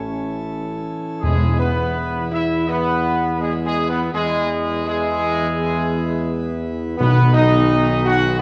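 A worn, warbling cassette-tape sound with drifting pitch colors this short classical passage, set in the wet reverb of a scoring stage. It moves at a stately 83 BPM in 4/4 and E major, with a solemn, regal mood, and it is cut from a longer piece. A mellow, vintage-toned trumpet section carries the melody, while a clear French horn section with light vibrato sits in the background and a trombone section of similar character holds sustained chords beneath. A full principal-chorus pipe organ with romantic voicing supports the harmony from the background, and an up-front tuba with a soft attack and a distant, roomy quality anchors the bass. Timpani played with medium mallets enter at 1.2 seconds and again at 7.0 seconds, as the harmony moves from A to E and then to B.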